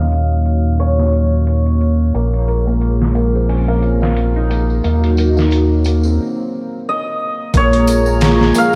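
A dreamy mix soaked in hall reverb, with vinyl crackle and a low-pass haze, frames this brooding trip hop excerpt in Bb minor at 89 BPM, swung on the 16ths. A round, deep analog bass sits up front beneath a detuned, moody pad that carries a filter sweep until 7.5 s. Meanwhile a gritty, pitched-down sampler kit with a thumpy kick plays alongside a tambourine in the background, and a hammered cimbalom shimmers through dub echo. From 2.1 s a soft, felt-muted upright piano with audible action noise adds arpeggios through analog chorus and delay, and a break arrives at 6.2 s before the harmony settles on Bbm7.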